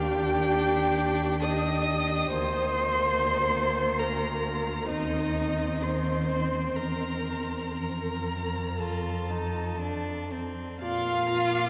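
This is a classical excerpt, a slow romantic movement for string quartet in Bb major and 3/4, moving with a free, rubato pulse somewhere between 56 and 74 BPM and carrying a serene, tender mood. The first violin sings the melody up front, its rich tone shaped by vibrato and expressive portamento, while the second violin holds a smooth, even second line beneath it. The viola fills in the accompaniment with a warm, vibrato-laden voice that also slides expressively between notes, and the cello anchors the bass up front with a focused, rich sound. All four players bow throughout, with the harmony drifting from Ebmaj7 through Bb/D, Cm/Eb and C7/E to F before settling on Bb at 10.8 seconds. A wet cathedral reverb with a long 5.2-second decay bathes the ensemble in a spacious, glowing halo.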